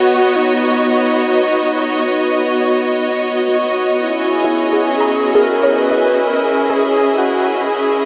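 Bathed in a huge, wet reverb, this serene, melancholic ambient fragment sets a reedy alto flute melody with shimmer reverb and tape echo over a smooth, up-front symphonic string section sustaining chords from B to C#m7, while a soft, round plucked synth slips in with very quiet arpeggios at 4.4 seconds.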